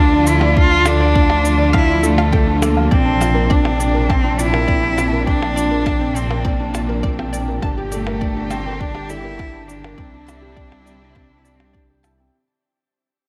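The recording sits in a lush hall reverb with a touch of small-room ambience, and it fades out from 2.9 seconds to the end of this cut from a longer piece of piano and strings electronica. The mood is hypnotic and cinematic, opening straight into a drop with a straight 4/4 pulse, while the harmony moves from Dm through Bbadd9 and Gmadd9 to Cadd9. Up front, a single bowed cello carries the melody with vibrato and a nasal, boxy tone, wrapped in delay and shimmer reverb. A felt-muted upright piano plays a soft, intimate riff through the same effects. Behind them a studio string section holds smooth, expressive chords with portamento and sidechain pumping, and a very quiet analog pluck adds bright, wave-folded arpeggios with chorus. Underneath, a dark detuned saw bass rumbles with saturated, beating unison tones and also ducks to the sidechain. Shaker and percussion blips come in at 0.3 seconds, and a layered, tape-warm electronic kick joins them at 0.6 seconds.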